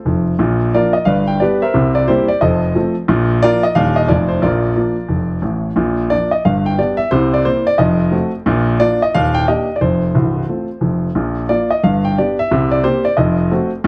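This is a short stride piano piece from a longer jazz performance, playful and exuberant, swinging briskly at 179 BPM in 4/4 in Bb major. A baby grand piano plays alone throughout, sitting up front with a natural tone and short sustain, and it ranges from C1 up to G5. The harmony cycles through Bb, G, C7 and F7 turnarounds, with Ebmaj7 colouring each phrase and a tense F7b9 arriving at 7.8 seconds and again at 13.2 seconds. Two matching passages frame the clip, the second beginning at 5.8 seconds. A moderate spring reverb adds a gentle halo, and the production leans dark and warm.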